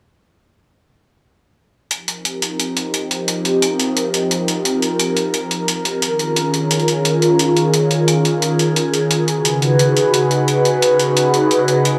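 Soulful and rolling, this short cut from a longer liquid drum and bass track moves at 175 BPM in F minor. A gritty, pitched-up, compressed electronic hi-hat sits up front from 1.9 seconds in a small room. At 2.3 seconds an airy, breathy, detuned pad with chorus and phaser arrives, holding bright, slow-blooming F9sus4, Eb9sus4 and Db9sus4 chords under a light reverb.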